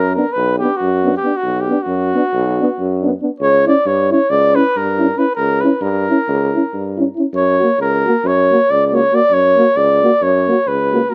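In a moderate studio room, this fragment of a bittersweet, fiery Balkan brass band tune in 9/8 at 274 eighth-note beats per minute in B harmonic minor sets a mellow, smooth-topped flugelhorn melody, up front with plate reverb, over a clear, vintage-toned tuba bass, a close-miked euphonium with light vibrato and a soft attack, and a warm second euphonium in classical-style accompaniment, moving from Bm to C#dim at 3.4 seconds and F# at 7.3 seconds.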